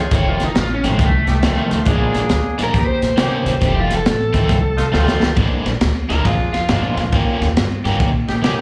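Electric blues shuffle cut from a longer piece, laid-back and soulful, where a raw, overdriven garage guitar takes the opening solo with spring reverb and slapback echo while mellow, vintage jazz-style horn stabs and a woody pizzicato upright bass hold down the changes. A bright, hollow-body semi-hollow guitar drives the riff through harmonic tremolo, and an up-front breakbeat kit, dark and gritty with a high-tuned snare and punchy kick, plays a fill from 4.9 to 5.4 seconds before a clean guitar solo takes over. From 6.1 seconds a slightly broken-up guitar through a small old amp adds a brief second line, all set in the club reverb of a live gig heard through the venue's PA.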